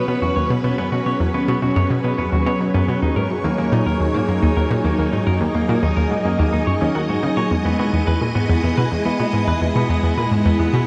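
A round, detuned analog pluck riff with chorus and delay drives this expansive, hypnotic slice of ambient sequencer-driven space music, framed by swirling phased string-machine chords, twangy delayed clean electric guitar arpeggios and an airy, wind-like tuned noise texture entering at 0.3 seconds in the background, all over Bsus2, D#m7 and Emaj7 chords in a dark production washed in huge reverb.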